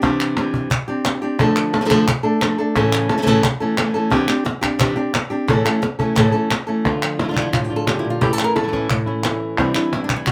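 A straight 4/4 pulse from woody, hard-handed cajon with faint snares and crisp, saturated palmas hand claps drives this mournful yet fiery flamenco passage, cut from a longer piece. An up-front, bright fingerpicked flamenco guitar carries the melody over chords moving among Cadd9, Dm and A, and a second fingerpicked flamenco guitar adds stabs from 6.8 s as a new section begins at 6.9 s. The cajon has a band-limited, vintage tone, and the whole performance sits in a moderate studio ambience.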